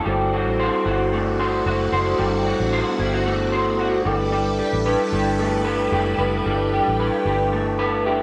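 A slightly broken-up, lo-fi electric guitar through a small old amp sits up front with warbly chorus drift, joined by a flute-like tonewheel organ on slow rotary speaker, a swirling phased string machine holding sustained chords, and a round, foam-muted bass, in a laid-back, hazy bedroom pop excerpt in G major at 112 BPM with a light swing, moving from D7 to G69 before an organ fill at 7.5 seconds.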